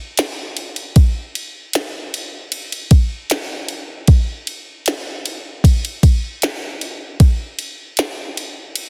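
A dense, heavily limited modern master with light reverb frames this short pop excerpt, cut from a longer piece and carrying a tender, heartfelt mood at 77 BPM in a straight 4/4. The only part is a glitchy, electronic drum kit placed up front, entering at 0.2 seconds with a soft kick, a tiny snare and ride cymbal, and playing through to 8.9 seconds. Its produced character gives the gentle groove a fragile, intimate edge.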